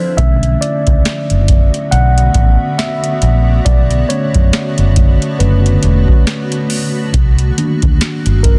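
Contemporary R&B at 69 BPM with a moody, late-night feel and a 16th-note swing, built on a mellow, clean tine electric piano taking the lead over a cloudy, evolving granular pad with its own reverb, a round, foam-muted fingered bass and a booming analog drum machine with deep kick, tonal snare and metallic hats, moving from Bm9 to Cm9 at 7.1 seconds in a dense, heavily limited mix cut from a longer piece.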